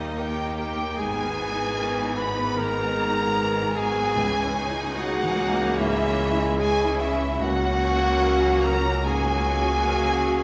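A slow, rubato pulse around 74 BPM in 4/4 carries this short, emotional passage of cinematic orchestral film score in G# minor, cut from a longer piece and feeling uplifting and moving. A rich, lush violin section sings the melody with vibrato and a smooth, focused top, while a bright solo clarinet, a pure, hollow flute in the background and a distant, intense second violin section weave supporting lines alongside it. A smooth, even viola section and a mellow French horn section with soft attacks fill out the middle, the horns holding sustained chords. Underneath, a very quiet, dark piano with audible action noise and short sustain adds intimate accompaniment, as a clear double bass section and a background cello section anchor the low end. The harmony moves from D# to G# minor with an added ninth, then to C# minor add9 and finally F# add9 over C#, all bathed in the wet reverb of a church or concert hall, with every part sounding from 0.0 to 10.4 seconds.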